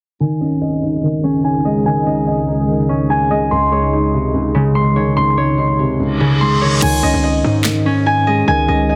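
A felt-muted upright piano sits up front in this ominous, tense drill excerpt, its soft, vintage tone carrying the accompaniment from the opening at 0.2 seconds through to the end, shaded by a low-pass filter. Beside it, a concert harp plays ringing, fingerpicked arpeggios, also placed up front and given a low-pass filter and digital delay, while a deep, detuned sawtooth pad holds sustained chords beneath them with slow attack, chorus and its own reverb until 6.8 seconds. The opening stretch moves from a C#sus2 chord to G#/C# under a filter sweep, with a tense half-time feel. A reverse cymbal leads into the drop at 6.8 seconds, where a punchy, heavy 808-style bass with a fast attack and decaying sine tone arrives alongside an electronic drill kit of crash cymbal, handclaps and a sharp snare, with the hi-hats muted. The mix has a digital ambience and a dense, heavily limited modern master.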